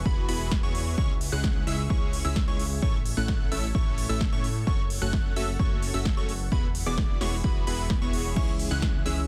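This dense, heavily limited festival progressive house excerpt sits in a digital ambience, with an overdriven electronic kick placed up front and re-recorded in a large room. At 130 BPM in straight 4/4 and F# minor, the mood is emotional and anthemic as the chords move through Eadd9, C#m, A and F#m. A fat, detuned sawtooth bass carries the low end with a fast attack and decaying notes. Above it, a punchy supersaw stab plays a riff roughened by vintage 12-bit sampler grit and tape echo, while a catchy, plucky unison lead spins high arpeggios with a filter sweep and its own tape echo. A lush, bright pad with slow attack and long release sustains chords in the background through chorus and phaser, and the pad, bass, lead and stab all pump with sidechain. A big-room dance kit adds a punchy snare, crisp hi-hats and crash cymbal, and a dark, boxy grand piano enters only at 8.4 seconds for the final moments.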